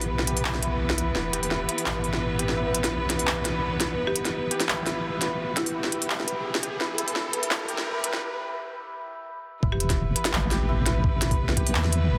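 A tense, cinematic half-time drum and bass passage in E minor at 170 BPM opens with lush, bowed studio strings holding sustained chords that pump under sidechain compression. Alongside them, a bright, shimmering santur rings out arpeggios through a low-pass filter and tape echo, while a deep, dark wobble bass with a detuned sawtooth edge and chorus sits up front. A produced electronic kit with a woody, softly clipped snare, crisp hats and handclaps carries a lightly swung groove, and the santur's filter sweep and an electronic riser build tension in the background. A buzzing, hard-mallet marimba adds a dry, percussive melodic fragment with dub echo from 4.1 seconds, tucked well behind the other parts. After a break at 8.2 seconds, the drop lands at 9.6 seconds with an impact, a sub drop and a gritty, pitched-down kick thumping beneath a dense, heavily limited mix washed in huge ambient reverb.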